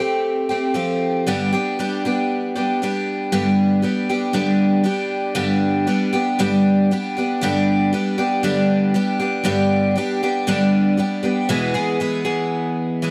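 A straight, steady 4/4 pulse carries this short rock passage, cut from a longer piece, and it has a hopeful, warm character. A picked twelve-string acoustic guitar plays alone for the full 13.1 seconds, ranging from E2 up to G#4. Its octave-doubled strings give a bright, shimmering ring, with the fresh-string sparkle and finger squeak sitting up front in the sound. The harmony opens on Fadd9 and moves to G at 1.3 seconds, lingering there before shifting to E at 11.5 seconds for the closing stretch. The recording is dry and close, in a 1970s studio manner with little reverb.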